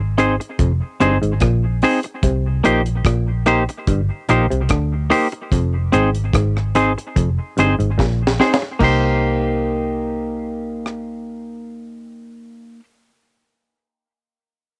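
A straight, unhurried 4/4 roots reggae groove sets a hypnotic, meditative mood in this short cut from a longer piece. The deep reggae drum kit sounds dry, dark and smooth up front, with a tight kick, a high-tuned snare, rim clicks, hi-hat and crash, and its top end rolled off; a drum fill from 8.0 to 8.8 seconds leads into the second section. Beneath it, a vintage muted fingered electric bass gives a round, foam-muted low end with tube saturation, moving over Fm7 and Cm7 chords. A clean, compressed semi-hollow electric guitar carries the accompaniment with a hollow-body tone, cassette tape color and dub echo. A muted clav adds a percussive, stringy riff through a combo amp until 8.2 seconds, its mellow tone also shaded by cassette tape. The whole has a light reverb and the homely character of a home recording on cassette.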